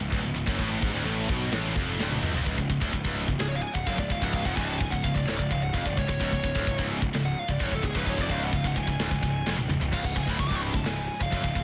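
Heavy metal with a relentless, heavy mood, built on three bright, picked, distorted guitars playing low riffs in the background, one of them double-tracked and very quiet, over a growly, fuzz-laden bass and an up-front, saturated drum kit whose gritty kick is soft-clipped beneath bright china and crash cymbals, snare and toms. After a drum fill at 2.0 seconds, a dark, high-gain lead guitar enters at 3.4 seconds with a solo that runs to the end, with another fill near 9.5 seconds. The sound is dense and heavily limited, with light reverb and the drums in a big room.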